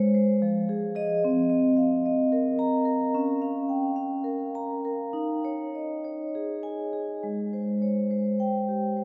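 A wet cathedral reverb surrounds this short passage cut from a longer contemporary classical piece for solo vibraphone, played with medium mallets in a warm, playful mood in Ab major. The vibraphone sits up front with a dark, smooth, metallic ring and a slow motor vibrato, moving freely in rubato 7/8 at roughly 195-226 eighth-note beats per minute across a range from F3 to Bb5. Its harmony drifts through Fm7, Cm7, Db6 and Eb7sus4 before arriving on Abmaj7 as a new section opens at 7.2 seconds.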